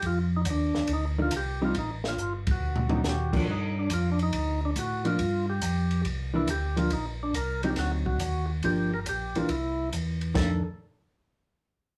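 Swinging and bluesy, this short excerpt of soul jazz organ trio music moves in 4/4 with a swing feel. A percussive tonewheel organ carries the melody up front, its warm, full tone marked by second-harmonic percussion and key click through a slow rotary speaker. Underneath, a second, mellow tonewheel organ plays the bass line with a round, lightly overdriven tone, chorus vibrato and its own slow rotary swirl. A compact cocktail drum kit sounds dry, with dark cymbals, a high-tuned snare and a punchy kick, and it plays a fill from 2.2 to 3.0 seconds, with a band accent at 2.4 seconds. A hollow-body jazz guitar enters at 1.2 seconds with clean, fingered, compressed accompaniment, all set in the ambience of a small room where the band plays live together.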